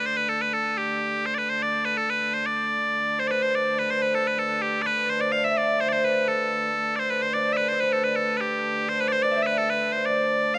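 A straight 2/4 pulse at 126 BPM drives this ancient-sounding medieval dance, cut from a longer piece, where loud, piercing bagpipes carry the melody up front with a slapback echo over a distant, woody hurdy-gurdy drone. At 3.2 seconds a fingerpicked concert harp enters with a ringing second line, also touched by slapback echo. The recording is dry and open-air, with the bagpipes dominating the mix.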